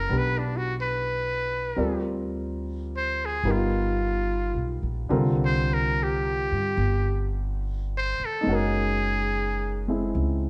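Jazz ballad at a slow 72 BPM with a swung late-night, intimate mood, cut from a longer piece: a metal-muted trumpet carries the melody as a buzzy, thin solo with light vibrato, soft attacks and scooped notes, sitting up front until it drops out at 9.9 seconds. Beneath it, a baby grand piano gives natural, short-sustained accompaniment while a pizzicato upright bass adds a woody, thumpy pulse. The dark production places the trio in a large studio with moderate reverb, as the chords drift from Gmaj9 through G7alt to F#9.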